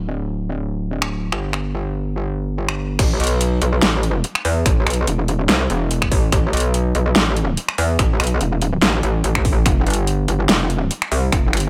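Aggressive and heavy, this short cut from a longer wobble dubstep track runs at 144 BPM in A minor with a swung, half-time feel. A metallic, saturated FM wobble bass with chorus and overdrive opens alone in the low register, the dubstep kit of huge snare, metallic hats, finger snaps and crash joins at 1.0 seconds, and a punchy, tape-warm electronic kick arrives with the drop at 3.0 seconds. The mix is dry, with the compressed bass and the kit up front.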